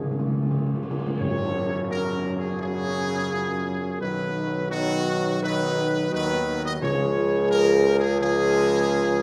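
A straight 4/4 pulse at 85 BPM carries this triumphant, solemn classical fanfare, cut from a longer piece. It opens with a timpani fill struck with hard mallets, then comes a band accent at 1.2 s, where a trombone section and a dark tam-tam enter. Up front, a mellow trumpet section with light vibrato and a soft attack carries the melody over background French horn chords, smooth-topped trombones and a distant, roomy tuba on the bass, as the harmony moves from F#sus2 to B and C#. The articulate timpani return briefly at 6.8 s, all inside a wet recital hall reverb.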